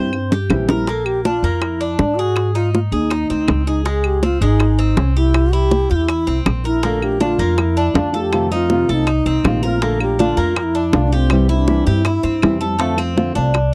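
Relaxed and warm, this Cuban son and guajira fragment opens with a short drum fill as a breathy, unsteady bass bansuri with vibrato carries the melody over bright, metallic tres arpeggios, a growly, thumpy upright bass up front, round low-tuned bongos and woody claves, while a thumb-plucked nylon-string guitar is heard briefly at the start and again from 6.8 seconds, the ensemble caught in a dry, close 1970s-style studio sound.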